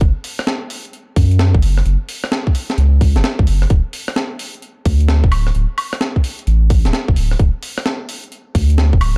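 UK garage in a two-step mould with a sunny, bouncy swing, this excerpt pairs a deep, thick saturated sub bass sitting up front with a tight, layered electronic kick recorded in a small room, while a gritty, compressed sampler-style breakbeat kit adds hi-hat, rim click, a high-tuned snare and woodblock further back, all set in a dark, digital ambience.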